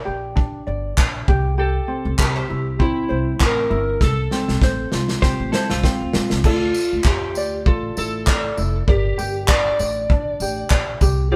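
A mellow, thumb-plucked ukulele opens this reflective, wistful acoustic pop piece in D minor, joined almost at once by a woody, dark pizzicato upright bass on steel strings. The loose indie drum kit sits up front with a tight kick, medium-tuned snare, handclaps, tambourine and crash cymbal, moving at 99 BPM in 4/4 with a light swing on the sixteenths. From 1.6 seconds an electric slide guitar carries the melody with a fingered, slightly broken-up tone, while the harmony moves through Gm, C and F. A drum fill runs from 4.0 seconds into the transition, and a clean, compressed electric guitar recorded direct adds a brief picked second line with a warm edge from 5.2 seconds. At 6.4 seconds the music turns to a Dmadd9 chord before returning to Gm, the whole band heard playing live together in one room with light reverb, cut from a longer piece.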